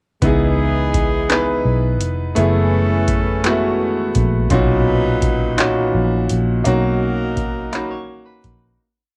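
Slow six-eight R&B at 56 BPM in B major, tender and intimate, captured as a lightly reverberant home cassette recording: a clear, up-front concert grand piano plays rootless chords with grace notes over C#m9, F#m11 and Bmaj9; a smooth-topped horn section with light vibrato holds swelling long notes in octaves; a round, foam-muted vintage electric bass slides through chromatic approach notes; and a booming analog drum machine with deep kick, metallic hi-hat and handclaps carries the beat, while a clean, lightly chorused electric guitar slips in a short fill from 7.7 seconds as the piece fades out from 6.6 seconds.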